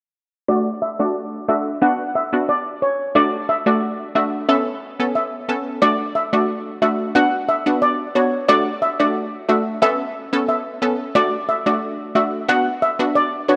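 At 0.5 s a steel pan and a punchy chord stab enter together, setting a bouncy, summery dancehall groove at 90 BPM in a straight 4/4, in D major. The steel pan carries the melody in a narrow band from C#5 to F#5, its shimmering, metallic tone softened by a low-pass filter and trailed by tape echo, for an airy, mellow voice sitting up front. Beneath it, the bright, detuned sawtooth stab plays the accompaniment between A3 and A4, with a fast attack, short decay and filter pluck, thickened by chorus and its own low-pass filter. A filter sweep runs through the opening section until 5.8 s, where the second section begins and the chords keep cycling through D, Bm and Aadd9. A moderate, lush hall reverb surrounds both parts until they stop together at 13.6 s, in a clip cut from a longer piece.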